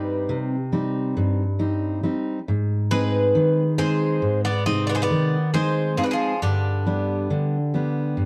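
An up-front, full-bodied fingerpicked steel-string acoustic guitar carries the accompaniment in this melancholic, wistful Greek folk fragment in 9/8, as two bright, metallic bouzoukis with doubled strings play a higher melody and a lower second line over a Cm, Ab and G progression, all in a dark production with light reverb.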